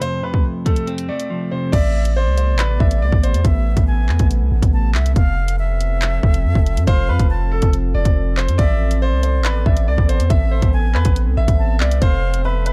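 An electronic drill kit sits up front in this ominous, menacing half-time hip hop cut, its hard-clipped kick, handclaps, bright hi-hats and crash cymbal carrying a tape-warm edge. A brilliant concert grand piano states the melody with long sustain, while a dark, scooped clean electric guitar, picked with a subtle chorus, supports it until 1.7 seconds. At that point a deep, sine-like 808-style bass with a fast attack and long decay joins up front, and a breathy, reedy concert flute with vibrato and delay takes up a second line. The piano drops out at 3.4 seconds and returns at 6.9 seconds. Underneath it all, a warbling, lo-fi pad of detuned sawtooth and triangle tones holds nostalgic chords that move between F and Amadd9, and the dark digital ambience frames this brief section cut from a longer piece.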